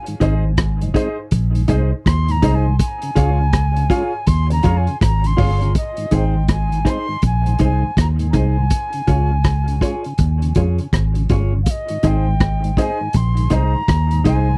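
An airy, distant concert flute with dub echo opens this laid-back roots reggae passage at 81 BPM in Ab major, taking a solo until 5.8 seconds over a lightly swung 16th-note feel and a simple Ab-to-Db chord movement. Underneath, a round, foam-muted electric bass and a gritty, muffled vintage drum kit with a tight kick, hi-hat and rim click sit up front. A mellow tonewheel organ with chorus vibrato hums in the background, a clean, compressed electric guitar adds its own dub echo, and a woody upright piano drops short stabs, pausing mid-passage and returning at 12.0 seconds, all in a dry, close 1970s-style studio sound.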